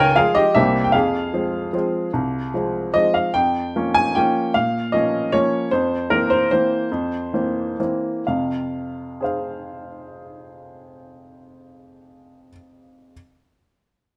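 In 3/4 with a rubato feel, this short classical piano waltz moves between 119 and 162 BPM and slows noticeably from 5.1 to 8.3 seconds. Set in F minor, it has a nostalgic, elegant mood that suits its gently shifting pulse. A single upright piano plays throughout, from 0.0 to 13.1 seconds, spanning C2 to Ab5 with a clear, woody tone and an intimate, up-front presence where the audible action noise adds a natural touch. The harmony opens on Db before passing through C7 to Fm, then moves to Bbm over F and C7 over F before settling back on Fm at 8.3 seconds. Light reverb gives the instrument a modest sense of space, and the recording is cut from a longer piece.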